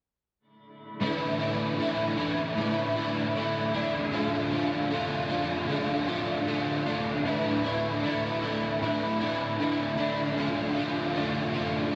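Wistful and hazy, this slow rock excerpt drifts in a cathedral-sized reverb, with a dark, overdriven semi-hollow guitar riffing up front through ensemble chorus, a second overdriven semi-hollow guitar riffing in the background through reverse reverb, and a slightly broken-up, lo-fi electric guitar through a small old amp fingering compressed arpeggios behind them, soaked in lush chorus and diffuse ambient delay, all from 1.0 seconds as the chords move between Asus4 and Dm in a dreamy, dulled mix.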